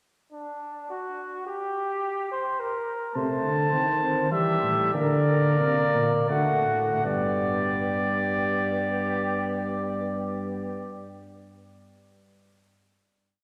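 Contemplative yet driving, this brief classical canzona for brass ensemble in triple time opens with a mellow flugelhorn alone on the second line, distant and touched with light vibrato. At 3.1 s an up-front trumpet with a vintage tone takes the melody, joined at once by a punchy euphonium on accompaniment, its vibrato gentle, and a roomy tuba on the bass, each part carrying its own line of imitative counterpoint. The music slows from 2.3 s before arriving at 7.1 s on a final chord that rings out in a wet church reverb.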